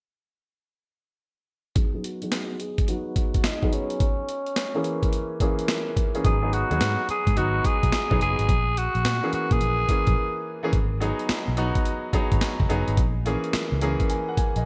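Punchy and bouncy, this new jack swing R&B cut moves at 107 BPM in G# minor, with a swung sixteenth-note feel that keeps it light on its feet. A gritty, sampler-style breakbeat kit sits up front with a thumpy kick, a medium-tuned snare and hi-hat, all soaked in gated reverb. A bright concert grand piano, polished and brilliant with deep bass and short sustain, carries the accompaniment through G#m7 and A#m7b5 changes. Over it, a raspy tenor saxophone with a clear, vintage pop edge takes the solo melody through a low-pass filter and delay until about 10.5 seconds, while a filter sweep runs under the opening section. A dark, round, foam-muted electric bass enters at 6.2 seconds, and after a short break the second section closes with a grand piano fill. The sound is bright 1980s-style digital production with light reverb and studio ambience.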